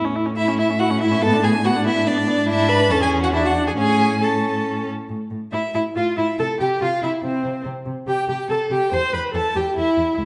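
Viola and cello open this quick, lively and graceful classical-period string quartet movement at 141 BPM in 3/4, the viola carrying a focused, rich accompaniment with a smooth top while the cello supplies a warm, bowed bass line with vibrato and expressive portamento. At 0.4 seconds the two violins join: the first sings the melody in a smooth, even tone with vibrato, and the second adds a supporting line, shaping it with portamento and expressive bowing. Tuned to A4 = 439 Hz in A major, the harmony moves through A, Bm7/A, E7/G# and E7sus2 before settling back on A. A second section beginning at 5.1 seconds turns to more colourful chords such as Fmaj7/A, C5 and Emadd11. The cello sits up front in the blend, and the whole quartet is heard in a wet recital hall with a soft, rounded high end, in a passage cut from a longer piece.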